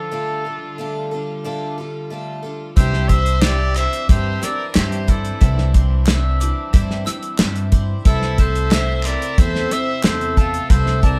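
A straight 4/4 pulse at 91 BPM carries this nostalgic, hopeful indie folk piece, which opens with a soft-attacked, classical-style trumpet melody with light vibrato over shimmering, octave-doubled twelve-string guitar picking and floating, distant symphonic strings holding sustained chords on Dm and Cadd9. At 2.8 seconds the arrangement builds as a cloth-damped, thuddy drum kit with a tight kick, hi-hat and snare lands up front beside a gut-strung pizzicato upright bass, while a focused fiddle adds a bowed second line and a mandolin picks double-string arpeggios high above. From 3.4 seconds a crisp group handclap sits in the background of a large room, and the band, playing live together with light reverb, settles onto Am/C near the close.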